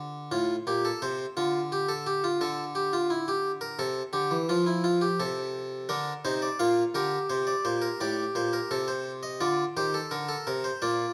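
A classical, baroque-style fugue in three parts, this short passage is cut from a longer piece and has an elegant, lively mood in a straight 4/4. A solo harpsichord in the French style carries every voice from 0.0 to 11.1 seconds, its single set of strings giving an airy, plucked tone. The instrument sits up front, captured by close, detailed microphones that bring out its bright attack across a range from A2 to F5. A moderate recital hall reverb, with an RT60 of 1.5 seconds, adds a sense of space around the notes. The harmony moves steadily through chords such as F/A, C, F, Bb and F/C, giving the counterpoint a clear, poised footing.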